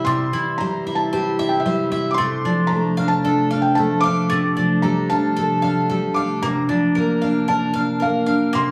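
A gentle, peaceful acoustic folk passage, cut from a longer piece, opens with four parts sounding together from the first moment: a fingerpicked steel-string guitar, a felt-muted upright piano, a warbly tape-like pad and a bowl-back mandolin. The dreadnought guitar sits up front with fresh, warm strings, carrying the accompaniment at a relaxed 113 BPM in straight 4/4. Above it, the soft, mellow piano sings the melody in an intimate, hushed voice, its audible action noise adding a close, homely touch. Beneath them, the nostalgic, lo-fi pad holds long, slow-blooming chords with a dark, detuned warble from its chorus and built-in reverb, while the double-strung mandolin adds bright, picked arpeggios at a lower level. Over a steady C in the bass, the harmony moves from C to Dm/C at 2.2 seconds and to Bb/C at 6.4 seconds, tuned to A4 = 438 Hz. The band sounds as if playing live in one small room, framed by a moderate large studio reverb that gives the blend a warm, unhurried glow.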